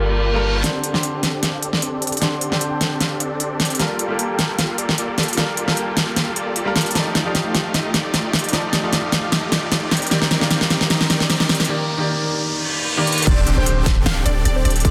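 Huge, detuned supersaw chords carry this emotional, lush future bass excerpt at 152 BPM with a half-time swing, filter-swept through a long build as a crisp, up-front big-room kit with a clipped snare, a bright baby grand with 12-bit grit and audible action noise, and background risers and a reverse cymbal push toward a drop at 13.3 seconds, where a punchy kick and a bright unison pluck join while a deep sine 808 and a soft, round octave-layered lead return, all bathed in huge ambient reverb and a dense, heavily limited master.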